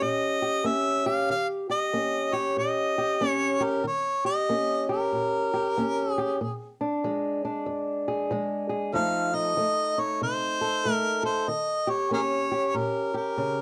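Acoustic country blues in a laid-back, soulful mood at 94 BPM with a swung 4/4 feel, this short passage cut from a longer piece pairs a warm, close-miked harmonica carrying a jazz-style melody with vibrato, tongue slaps, scooped notes and a cassette tape colour, over a dark, woody, boxy fingerpicked old ladder-braced acoustic guitar on old strings; both sit up front through Eb7, Bb7 and F7 changes, tuned to A4 = 438 Hz, in a home cassette recording with moderate reverb.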